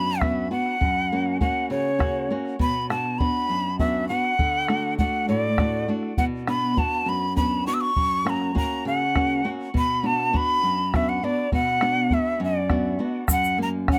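A close booth sound with moderate, short room ambience frames this melancholic, earthy Andean folk excerpt in a lilting 6/8, cut from a longer piece. Up front, an airy cane quena carries the melody with breathy chiff, tongued notes and vibrato, its unsteady, bright tone trailed by tape echo, while a fingerpicked flamenco guitar with fresh strings sits equally close, circling minor-key chords beneath it. A round, dry bombo joins at 0.2 seconds, and a grainy egg shaker adds a brief flick of texture at 13.3 seconds.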